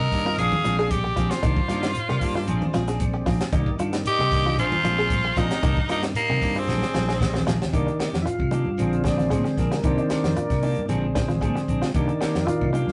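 A raspy, gritty tenor saxophone leads this defiant, driving afrobeat excerpt in C minor at 114 BPM, with a clear trumpet in the background carrying a second line until both drop out at 7.5 seconds. The tonewheel organ, smooth with key click and a slow rotary speaker, then takes a solo from 7.7 seconds, following a drum fill. Underneath, a dark, round fingered electric bass, a tight funk kit with a high-tuned snare, clean picked electric guitar stabs and twangy fingerpicked banjo arpeggios ride the Bb9 and Cm9 vamp, while very quiet congas, grainy shekere and woody, distant claves add texture to a rough rehearsal-room sound with warm saturation.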